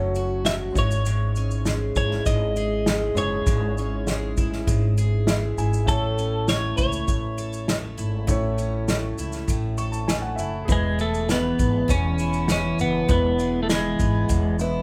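Acoustic pop with a carefree, sunny mood at 100 BPM, cut from a longer piece, where a clean, compressed twelve-string electric guitar carries the melody up front over shimmering, octave-doubled picked twelve-string acoustic guitar, a woody, growly pizzicato upright bass, a slightly detuned, worn upright piano that adds fills at 5.0 and 9.5 seconds, and an unplugged drum kit of tight kick, snare and shaker played with bundle sticks, all moving from F#m and C#m to E at 10.7 seconds with the feel of a band playing live in one room under light reverb.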